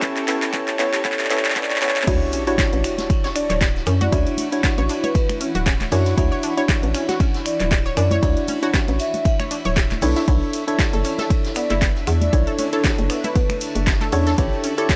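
Deep house at 117 BPM in D major with a soulful, warm mood: a deep, up-front electronic kick and a hollow, bouncy FM bass drive the drop from 2.1 s, under dark, pumping organ stabs, round analog pluck arpeggios with tape echo, a cloudy granular pad, a layered drum kit with dark hats, distant brushed jazz drums, a grainy shaker, dry hard-hand congas and a metallic, ringing vibraphone melody entering at 3.4 s, after a brief opening where a very quiet detuned analog pad and barely audible violins build up with a drum fill and a swell and sub drop.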